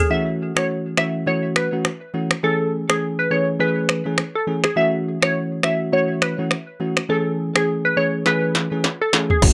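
Afrobeats with a mellow, sultry mood, this short cut from a longer piece rides a swung sixteenth-note groove in four. A glassy wavetable pluck carries the melody up front, its crystalline, detuned unison tone warbling with a vintage digital character, touches of ring modulation and a filter sweep, all thickened by chorus. Beneath it, a bell-like FM electric piano sparkles with quick, decaying notes and its own chorus shimmer, alternating between F#m7 and Amaj7 chords. An industrial drum kit enters at 0.6 s with a distorted kick, clanging snare, rim clicks, finger snaps, toms and crash cymbal, sounding produced, electronic and tape-warm, and it moves into a drum fill at 8.3 s. A deep, round log drum bass lands only at 9.4 s with a dark, percussive thump, and light reverb frames the whole mix.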